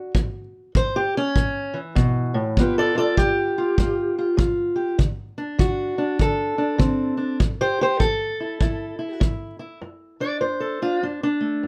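A fingerpicked steel-string parlour guitar carries the melody up front in this brief, rollicking cut of acoustic country blues, its dark, boxy tone ranging from F#2 up to D5 and taking a solo through the opening passage until 9.8 seconds. Beneath it, a punchy kick drum played with brushes sits in a roomy studio space, setting a swung 4/4 pulse at 99 BPM before dropping out at 9.4 seconds. The harmony moves through A, G7 and D7 to A5, then turns back to D7 as a new section begins for the final stretch. A light reverb surrounds the performance, and the slightly flat tuning at A4 = 439 Hz adds to its gritty character.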